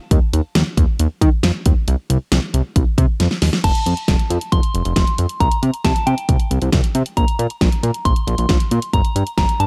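A thick, detuned sawtooth bass drives this synth-pop excerpt, sitting up front with a fast attack, sustained notes and an audible filter sweep as it moves through its low register. It opens at 0.1 seconds alongside a punchy, layered electronic drum kit, also up front, with a fat snare, hi-hat, kick and crash cymbal in a straight 4/4 at 136 BPM. A drum fill at 3.2 seconds leads into a new section at 3.6 seconds, where a soft FM synth bell enters with a pure, gentle tone that decays into a long release, colored by chorus, phaser and digital delay. The bell sits mellow and lower in the balance, high above the bass, while the harmony moves through F, C5, Bbsus2 and Gm. The mood is melancholic yet driving, and the dry sound keeps the bass and drums forceful, with the track tuned to A4 = 442 Hz.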